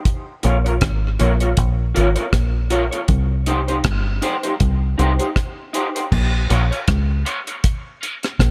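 Dub reggae at 79 BPM in Bb dorian, deep and hypnotic, this short cut from a longer piece sets a dry, tight-kicked drum kit with crash, hi-hat and rim click against a round, foam-muted fingered bass and a dark, slightly broken-up guitar treated with chorus and tape echo, whose filter sweep starts at 3.1 seconds, all over Bbm and Cm chords in a small room.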